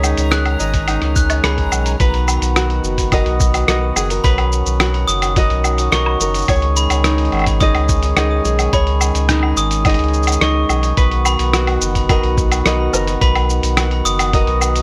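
A light reverb surrounds this hopeful, pastoral folktronica excerpt, moving in a straight 4/4 at 107 BPM in B major. A reedy, breathing pedal harmonium holds mellow sustained chords as a fingerpicked tenor ukulele plays bright arpeggios, roughened by vintage 12-bit sampler grit and echoed by digital delay. Underneath, a round, deep sine sub bass with a fast attack sits up front beside a muffled, compressed lo-fi sampler-style kit of hi-hat, rim click, shaker and woodblock, re-recorded in a large room. A reversed, detuned granular texture drifts dreamily in the background only until 2.0 seconds, a glockenspiel struck with hard plastic mallets adds a sparkling, bell-like second line from 0.3 seconds through its own digital delay, and a thumpy electronic kick drum joins at 0.7 seconds. The harmony alternates between C#sus2 and Bmaj7.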